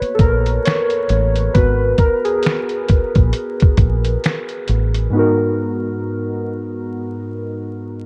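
A dark, hazy production with vinyl crackle and light reverb frames this nostalgic lo-fi hip hop excerpt, moving at 67 BPM in 4/4 with a gentle swing on the sixteenths and sitting in G# minor. Warbly synth keys play throughout, detuned and wave-folded with a noise layer, their airy, mellow tone softened by chorus, cassette-tape warble and a low-pass filter as they take a solo over a G#m9 chord in the opening section. Beneath them, a deep dub fingered electric bass stays low and round, foam-muted and punchy. The sampler-style drum kit brings finger snaps, hi-hat, a thumpy kick and a fat snare, pitched down and muffled with a gritty 12-bit character. Bass and drums drop out at 5.1 s, leaving the keys alone through the closing section until 8.1 s.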